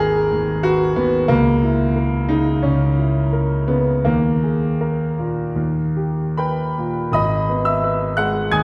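The rhythm moves in a flexible 4/4 with rubato, the pulse drifting between 70 and 94 BPM. This short excerpt from a romantic character piece for solo piano is stormy and brooding, set in G# minor with the instrument tuned to A4 = 442 Hz. A clear concert grand carries everything alone, spanning G#1 to G#6, with deep bass and an open, up-front tone. The harmony moves from G#m through A#dim/C# and a suspended D#sus4 that resolves to D# at 5.6 seconds, then returns to G#m as a new section begins at 7.1 seconds. The piano is heard from further back in a concert hall, wrapped in wet reverb with a 2.0 second decay.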